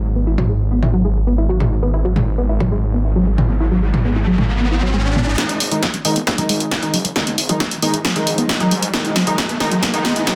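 Driving peak-time techno at 135 BPM in G# minor, intense and industrial, opens on a thick, beating detuned saw bass pumping up front, a tight sequenced synth riff with chorus, phaser, tube saturation and dub echo, and a punchy analog drum machine of hi-hat, snare and toms, all moving over a G#m7 while filter sweeps work on the drums and riff and an electronic riser enters at 2.9 seconds. At 5.4 seconds the harmony shifts to G#5 as the build-up begins: an edgy, nasal sync-sweep polysynth joins with stabs under its own filter sweep, carrying chorus, cassette tape colour and tape echo, alongside an overdriven electronic kick sitting in the background and a drum fill. A moderate stone room reverb and a dense, heavily limited modern master frame this excerpt, which is cut from a longer piece.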